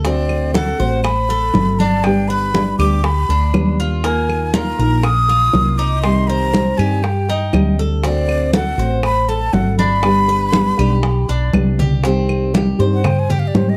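Dark, warm studio sound with a moderate room reverb frames this danceable Cuban son and guajira excerpt in C minor at 120 BPM, where a breathy, expressive metal flute sits up front with soft-attack vibrato and a plate-reverb sheen. Beneath it, a full-bodied, thumb-plucked nylon-string guitar carries the accompaniment, a bright, metallic Cuban tres picks double-string arpeggios, and a round, hollow-body fretless electric bass anchors the low end. Thin-skinned congas struck with hard hands join tight, high-tuned bongos and woody claves set further back, and a drum fill at 11.5 seconds opens into a flute solo from 12.0 seconds.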